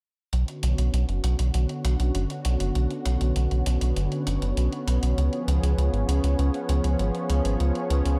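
From 0.3 seconds, a lush, detuned unison pad with chorus holds sustained chords through a filter sweep, alongside a round, deep analog bass with tube saturation and a tape-tinged electronic hi-hat re-recorded in a large room, in a cinematic, driving synthwave passage at 99 BPM in B dorian that moves from Bmadd9 to C#7 at 5.2 seconds, set in light reverb with a dark production.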